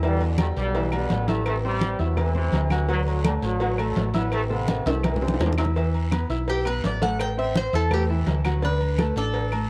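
A punchy, bright trombone section leads this fiery, driving salsa excerpt in E minor at 167 BPM over a clear grand piano, a round, dark hollow-body bass up front, damped congas, ringing timbales and agogo bells, tight high-tuned bongos and cowbell, raspy guiro and woody claves, then after a drum fill a picked, metallic Cuban tres takes a solo from 5.8 seconds, all coloured by light reverb and the warbling pitch drift of worn cassette tape.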